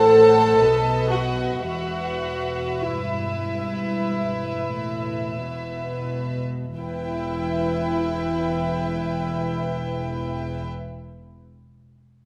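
A moderate recital-hall reverb surrounds this melancholic, solemn excerpt of a slow romantic movement for string orchestra in E minor, moving at a rubato 42 to 64 BPM and slowing down through its first 6.8 seconds before a new section begins. A dark, sul tasto violin section carries the melody with light vibrato over a clear, floating second violin line, while an up-front, rich viola section supplies the accompaniment. Beneath them a warm cello section and a dark, intimate double bass section hold the bass as the harmony settles from F#dim/A through B7 to Em at 1.6 seconds.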